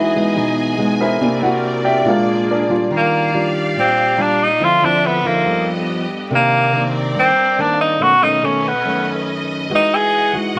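A warm concert grand piano with deep bass takes a solo turn over thumb-plucked classical nylon-string guitar with finger squeak and distant, lush bowed symphonic strings to open this breezy, romantic bossa nova at 141 BPM, before a bright, punchy tenor saxophone enters up front at 3.0 s, playing a forceful, vintage jazz melody with vibrato and scooped notes as rich chords unfold under moderate studio reverb and vinyl crackle, the piano dropping out at 8.3 s in a fragment cut from a longer piece.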